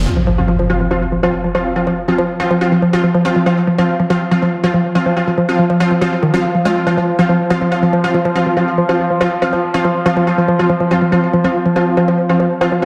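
A wet digital room reverb and a dense, heavily limited modern master give this short techno cut a crowded, glossy sheen from the first moment. It drives along at 141 BPM in a straight 4/4, with a relentless mood built on an F5 chord. Up front, an aggressive rave stab of thick, detuned sawtooth unison cuts through with a bright filter sweep, fast attack and decaying tail, coloured by chorus, its own reverb and delay. A woody wave-folded pluck carries the riff from 0.2 seconds, its mellow, organic tone mixing triangle and sine with a noise layer, treated with chorus and a digital delay. Behind them, an analog drone holds F3 in the background, warbling and vintage with pulse-width modulation, a slow attack and chorus. An electronic impact opens the piece and sounds until 1.8 seconds.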